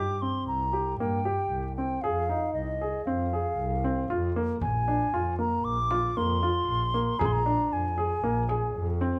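Contemporary instrumental chamber music in 5/4, this short cut from a longer piece feels hypnotic and pensive over a straight pulse. A wooden flute carries the melody from Eb5 to D6, its pure, woody tone shaped by vibrato, a crisp attack and lifted highs, sitting up front. Beneath it, a baby grand piano spins arpeggios with a warm, present sound and long sustain. A single bowed double bass holds the low end with a dark, smooth, even tone touched by vibrato. At 4.6 seconds a deep, large frame drum joins from the background, heard in a small room. Close, detailed microphones and light reverb keep the ensemble intimate as the harmony moves from C7(no3) through Fm7 to Bb7.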